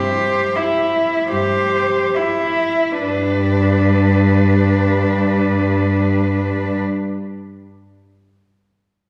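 A rubato 3/4 pulse at 33-44 BPM slows through the opening 3 seconds of this lyrical, warm classical piece for cello ensemble in G major, where a bowed melody cello sings with vibrato and portamento between B4 and E5 over an intimate, up-front second line played sul tasto with an airy bow and soft attack, a distant, very quiet bass cello stays on G2, and a rich, even cello joins on G2 at 3.0 s, the ensemble ringing in a recital hall with a 1.8-second reverberant decay.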